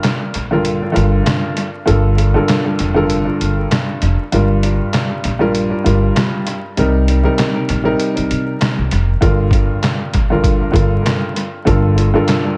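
Tough and moody, this swung boom-bap hip-hop fragment, cut from a longer piece, pairs a dark, mellow grand piano with short sustain and tape echo, sitting up front over Gm7, Gm9 and Cm7 chords, with a muffled, pitched-down, sampler-style trip hop kit of thumpy kick, medium-tuned snare, hi-hat and handclaps, also tape-echoed, and a woody pizzicato upright bass entering at 0.3 seconds, all wrapped in small-room reverb, an echo-heavy mix and vinyl crackle.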